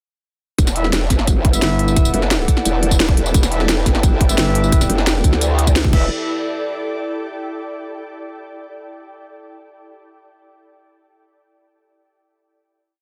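A growling, wobbling, saturated bass drives this short, dark and mechanical technical drum and bass piece at 174 BPM in E minor, joined by a thick FM bass in chopped bursts, a tight layered kick and a crisp kit with cracking snare, tambourine and crash, sparse echoing brass stabs in power voicing, a deep detuned analog pad with sidechain pumping in the background, and an ethereal airy pad that carries the final E minor chord alone after 6.1 seconds.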